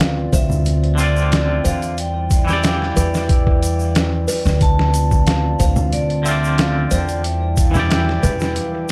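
An echo-heavy mix in a small room gives this short cut from a longer melancholic, smoky trip hop piece its hazy feel, moving at 91 BPM in a straight 4/4 in D dorian over Dm7 and Em7 chords. Up front, a gritty, pitched-down sampler-style drum kit with a thumpy kick, a medium-tuned snare and hi-hat carries analog delay, joined by a woody pizzicato upright bass that drops out for a brief break at 8.6 seconds. Distant congas and a tube shaker sit back in a large room, while a dark, detuned analog pad holds sustained chords through chorus and vintage 12-bit sampler grit. A delicate, tinkling music box plays arpeggios with tape echo in the background. The smooth, ringing vibraphone with medium hard mallets carries the melody from 0.3 seconds, soaked in dub echo, and a bright, twangy electric guitar enters at 0.9 seconds with clean picked accompaniment, tremolo and tape echo.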